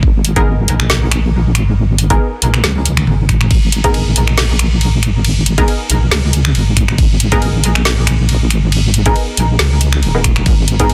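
Heavy and cavernous, this deep dubstep excerpt moves at 138 BPM in a swung half-time feel in G# minor, resting on a G#madd9 chord. A dark, wobbling sawtooth-and-sine bass sits up front under a knocking electronic kick, while a garage kit with a woody snare, metallic hats, ride, toms and finger snaps enters at 0.2 seconds and delivers a fill around 2.6 seconds. Muted, evolving chord stabs with a filter pluck drift through dub echo and a tape haze, all within a digital ambience and a dense, heavily limited master.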